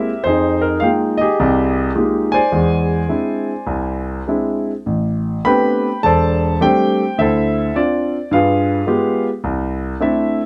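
Solo jazz on a warm, up-front grand piano with long sustain, cool and moody at 105 BPM in 4/4 with a 68% eighth-note swing and rubato feel, ranging from E1 to B5 and moving from Fm11 and Eaug7 into A minor at 4.9 seconds, then through Am11, Dm7 and G7b9 to settle on C69, captured with close, detailed microphones and light reverb in this excerpt cut from a longer piece.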